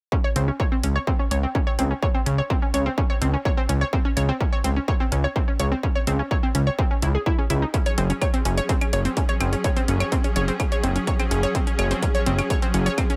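Set in a digital ambience, this hypnotic, melancholic melodic techno clip at 126 BPM pairs an up-front distorted, overdriven kick and layered hi-hat and claves with a fat, detuned sawtooth bass and a round, ring-modulated analog pluck arpeggio carrying chorus, 12-bit sampler grit, tape echo and sidechain pumping, and a lush, bowed string section with vibrato joins them at 7.7 seconds on an F#5 chord and pumps along to the end at 13.2 seconds.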